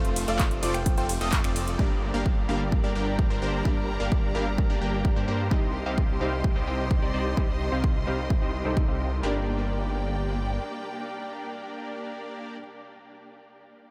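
Festival progressive house in G minor at 129 BPM, this anthemic, euphoric excerpt from a longer piece opens on a drop lasting its first 1.8 seconds. There a big-room dance kit of finger snaps, handclaps, metallic hi-hats and ride cymbal is joined by a punchy, tape-warm electronic kick up front, while a clear baby grand piano ripples arpeggios with subtle chorus and a sparkling, bell-like FM electric piano adds a brief melody. A thick, saturated detuned saw bass with chorus sits up front beneath a punchy detuned supersaw stab riff. A soft, felt-muted upright piano with audible action noise and lush bowed symphonic strings with vibrato fill out the accompaniment. The piano, strings, supersaw and bass all pump with sidechain, and from 1.8 to 9.2 seconds a filter sweep moves across the supersaw as the chords travel from F through G minor and C minor back to G minor. Diffuse delays and a huge ambient reverb soak the mix in a dreamy haze.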